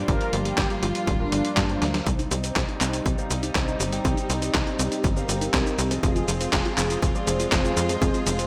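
A punchy, overdriven electronic kick, layered and re-recorded in a large room, drives this nostalgic, melodramatic italo disco excerpt alongside a gritty, up-front sampler-style kit of snare, hi-hat, handclaps and cabasa that plays a fill at 1.8 seconds. A tight, nasal sequencer bass with tube saturation pushes underneath while a mellow, detuned synth brass carries the dark, chorused melody, and a deep-voiced grand piano adds delayed stabs in the background beside soft, sul tasto chamber strings that take on a filter sweep from 2.1 seconds. At that point a very quiet, round pluck enters with gentle arpeggios, all set in a wet plate reverb with bright 1980s-style digital production.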